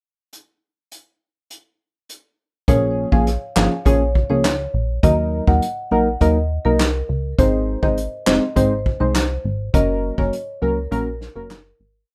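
Dancehall in Bb minor at 102 BPM, sultry and hypnotic, where a roomy, distant unplugged drum kit with a punchy kick and clap-layered snare plays a pickup bar alone before a plucky, sawtooth analog bass, a soft chorused chord stab and a smooth, dark marimba hook enter at 2.7 seconds over Bbm7, Ebm, Ab and Gb, all in a rough home demo mix with light reverb that fades out from 9.7 seconds into a closing break.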